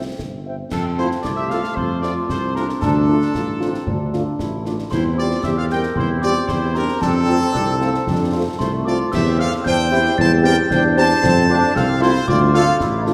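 A straight two-beat march pulse drives this proud, festive wind band excerpt, cut from a longer piece. A bright trumpet section carries the melody while a distant woodwind section and a bell-like glockenspiel, struck with rubber mallets from 0.7 s, add second lines. Beneath them, a warm French horn section and a vintage-toned trombone section hold accompaniment and sustained chords in the background, a mellow, up-front tuba with a smooth top anchors the bass, and concert snare, bass drum and dark clash cymbals enter at 0.2 s, the band sitting in a wet scoring-stage reverb.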